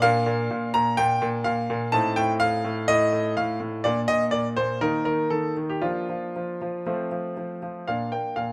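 Close, detailed microphones and light reverb put a clear baby grand piano up front in this brief, playful and elegant cut from a longer classical-period sonatina in B-flat major. The solo piano moves at roughly 115-127 BPM in 4/4 with a rubato feel, its present tone spanning A2 to Bb5. The harmony travels from Bb through F7/A, Eb5 and Bb/F to F, then settles back on Bb at 7.9 seconds.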